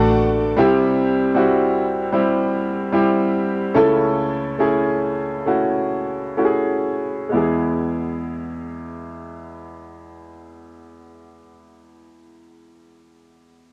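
A bright, woody upright piano sits up front in this hopeful, emotional pop excerpt at 61-78 BPM, carrying the accompaniment to 13.7 seconds through cassette grit and plate reverb, while a dark, softly bowed string section, a picked parlour acoustic guitar and a round, punchy, foam-muted electric bass sound only at the opening, before the tempo slows between 0.6 and 7.3 seconds in a wet booth ambience of a home cassette recording.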